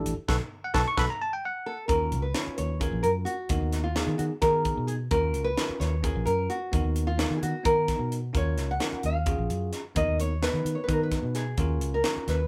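This excerpt from a longer electric jazz fusion piece opens with the full band striking a sharp accent from 0.3 seconds while the drums play a fill, a brief intense burst before the groove settles at 260 BPM in 7/8 with a straight feel. A bell-like tine electric piano supplies bright, clean, direct chords, while a fingered electric bass sits up front with a dark, round, foam-muted tone. The crisp fusion drum kit sounds airy and polished, with a high-tuned snare, punchy kick and hi-hat in a small room. From 1.7 seconds a fingerpicked nylon-string guitar carries the melody, its small, shadowy acoustic voice placed close and prominent. The harmony circles around D#m9, moving through G#m9 over D# and a later Bmaj7 over D# before returning, giving the music a nocturnal, restless cast. The band plays live together in one room under light reverb.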